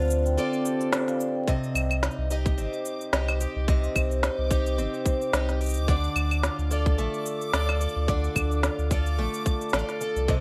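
Folktronica with an autumnal, delicate mood, cut from a longer piece, set in a gently swung 4/4 over a bed of vinyl crackle. A picked twelve-string acoustic guitar carries the arpeggios throughout, boxy and shimmering with its octave-doubled strings, finger squeak and a touch of tape echo, sitting up front beside a round, sine-like sub bass that holds down the low end. At the opening, a vibraphone played with medium mallets adds a metallic, ringing second line through tape echo, dropping away at 1.5 seconds as a brief break and band accent give way to the main section. There, a tight, overdriven electronic kick joins the overdriven electronic shaker, woody snare and claves, all re-recorded in a small room. From 2.7 seconds a reversed, detuned, granular texture floats high and faint in the background, dreamy and bright with its own reverb, as the harmony moves from D minor to C minor and back to D minor.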